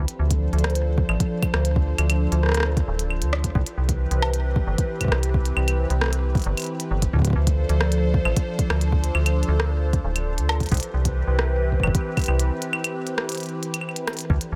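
IDM at 134 BPM in straight 4/4, melancholic and eerie, tuned to A4 = 435 Hz and cut from a longer piece, cycling between Dm7 and Cmaj7. A swirling, detuned sawtooth pad holds slow-attack chords through phaser, chorus and shimmer reverb, while an up-front metallic FM bass with fast, decaying notes sits beneath, and a soft, overdriven electronic kick joins a glitchy kit of clicky hi-hats, claves and rim clicks treated with overdrive and delay, both drum parts carrying a small-room character. A break arrives at 12.5 seconds, with a drum fill at 14.1 seconds.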